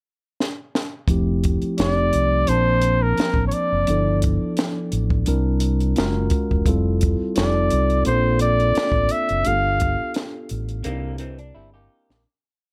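A clear flugelhorn with light vibrato sings a motif-based melody from 1.8 to 10.2 seconds over a laid-back R&B and neo-soul groove at 86 BPM in F major, carried by a compact cocktail drum kit with a high-tuned snare and punchy kick, a round fingered electric bass with ghost notes and chromatic approach notes, and a mellow tine electric piano holding rootless chords through a phaser, while a slightly broken-up lo-fi electric guitar adds short fills in sixths at 10.8 seconds as the smooth, warm piece fades out.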